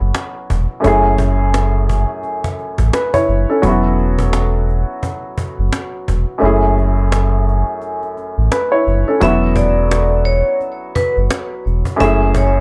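Boom-bap hip-hop at 86 BPM with a swung, gritty and dark mood, built on a mellow baby grand piano shaded by cassette tape and filtering as it moves between Esus2 and F#m7, a deep, up-front sine sub bass with tube saturation, and a snappy cajon with snares whose kick drops out from 6.4 to 9.2 seconds, before a metallic, ringing vibraphone struck with hard mallets, carrying slow motor vibrato and tape echo, takes the melody at 9.2 seconds in a dry hardware recording with faint mains hum.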